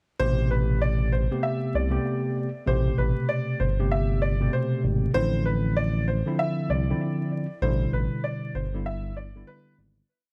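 Built on a swung sixteenth-note boom-bap groove in 4/4, this short, complete hip-hop piece feels dark and gritty from the first bar. A deep, looped synth bass sits up front, its smooth sawtooth-and-triangle tone carrying chromatic approach notes with a fast attack and sustained, mellow body. Over it, a worn, slightly out-of-tune tine electric piano plays chopped chords repeated like a sampled loop, lightly overdriven and given a cassette-tape grain as if heard through built-in speakers. A woody, slightly detuned upright piano adds a short looping melody with a natural, sampled-loop character, sitting further back in the mix. The harmony moves from Am9 to Dm9/A at 5.1 seconds and lands on Em7 as the whole hook fades out between 7.6 and 10.1 seconds, all set in small room ambience with a layer of vinyl crackle.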